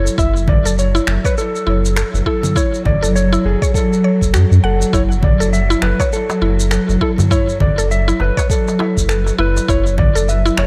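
An echo-heavy organic downtempo groove in F# minor at 101 BPM with a 16th-note swing opens on a dark, clean lap steel guitar melody over lush bowed strings and a round, up-front analog bass, both pumping with sidechain, while a woody, mallet-like synth pluck spins chorused, tape-tinged arpeggios through dub echo, electronic shaker, congas and finger snaps ride tape echo above a deep electronic kick, and a soft-handed clay darbuka joins in the background at 5.1 seconds, all resting on a single F#m7 chord for a mystical, hypnotic mood.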